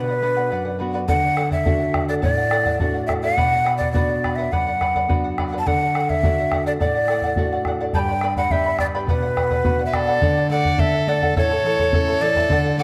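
Set in the moderate reverb of a scoring stage, this excerpt from a longer piece of Andean folk has an earthy, wistful character and a straight two-beat feel. A large wooden quena carries the melody up front, its breathy, straight tone marked by a crisp attack and a touch of chiff. Beneath it, a fingerpicked charango shimmers on its double strings, some doubled at the octave, while a warm classical nylon-string guitar, also fingerpicked, fills the lower register. A round bombo with a live-room sound joins at 1.1 seconds as the harmony moves among Bm, D and G. Near the close, at 9.9 seconds, a single close-miked fiddle adds a clear, biting second line with light vibrato and an airy bow as the passage turns toward its second section over D and A.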